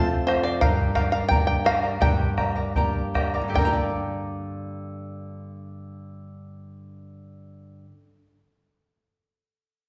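A straight 2/4 pulse drives this festive, earthy Andean folk fragment, which slows between 0.6 and 3.6 seconds as the harmony moves from F to G minor. Up front, a twangy, percussive bluegrass banjo played with fingerpicks carries the melody over a bright, shimmering charango with double strings and a warm, fingerpicked flamenco guitar, while a deep, dark bombo booms until 4.0 seconds. The whole ensemble rings in the reverberant acoustic of a recital hall.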